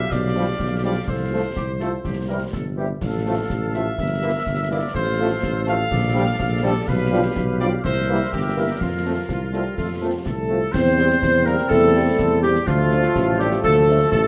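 A straight 2/4 pulse at 124 BPM drives this rousing, proud military-style march for wind band in F major, cut from a longer piece. A clear trumpet section carries the melody with light vibrato, while a more distant, roomy woodwind section adds a second line in the same register. Up front, a mellow solo tuba with a smooth top anchors the bass, and close, dry concert snare, bass drum and dark-toned clash cymbals keep the march steady from 0.1 seconds. In the background, a French horn section fills in accompaniment and a tight, vintage-toned trombone section holds sustained chords from 0.4 seconds. A warm solo euphonium joins at 9.3 seconds as another second line, just before the music moves into a new section at 10.7 seconds, all set in a moderate studio reverb with a dark production.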